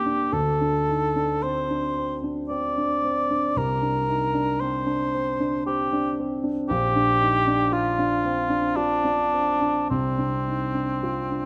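Close, detailed microphones catch a recital hall's moderate reverb in this pastoral, luminous impressionist duo, heard as a brief section cut from a longer piece. A mellow cor anglais sings the melody up front with light vibrato in a classical solo style, opening on a high D5 at 0.3 seconds. A warm grand piano, equally present, accompanies in a rubato triple metre through rich harmonies such as Cm9 and Bbadd9.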